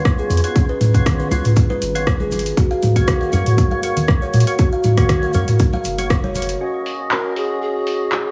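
A punchy, layered electronic kick drum sits up front with a tape-warm weight, driving this earthy afro house excerpt with a gentle swing. Beside it, an overdriven afro-pop kit of handclaps, metallic hats, rim clicks and toms carries a small-room character, while bright, high-tuned congas played with hard hands sit in the background alongside a grainy, very quiet egg shaker. A deep, round analog bass pumps against the kick, and a woody, hollow kalimba rings out soft, plucked arpeggios through digital delay. Stabs from a fat, lightly overdriven tonewheel organ with slow rotary speaker and percussive attack run throughout, moving from Db7 to Gb harmony. At 6.6 seconds the music shifts to Ebm7 as filter sweeps move across the drums and organ, and an airy, warm pan flute with a tongued chiff enters at 7.1 seconds for a short melodic line. The whole mix is heavily compressed with a radio-like sheen and a light studio reverb.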